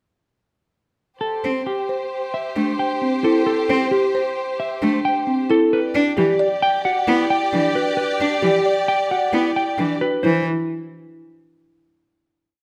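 Classical minimalist pattern music in 5/4, urgent and hypnotic, in which a dark, clean, fingered semi-hollow electric guitar carries an up-front repeated melodic cell while a woody, round folk marimba with soft mallets arpeggiates, a smooth bowed cello with vibrato repeats its own short accompanying figure, and a rich symphonic string section holds swelling chords over Am7 then Em7, all framed by close, detailed microphones and a moderate recital hall reverb.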